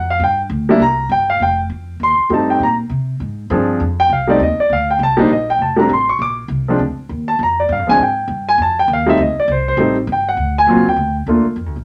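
Jazz with a relaxed, warm mood and a light swing on the eighth notes, heard here as a short fragment lifted from a longer piece. A grand piano carries the melody from the very start and stands up front with a polished, present tone and short sustain, ranging from the low middle register high into the treble. An upright bass plucked on steel strings supports it from underneath, woody and thumpy, sitting lower in the balance than the piano. The piano is featured as the soloist across the whole passage, moving through colorful harmony that includes Bb9, F7sus2, Cm7, Am7b5 and an altered D7 before settling on a bare G5 near the close. A small, wet room ambience surrounds the pair with a short reverberant glow. The piano stops at 11.4 seconds while the bass rings on to 11.8 seconds.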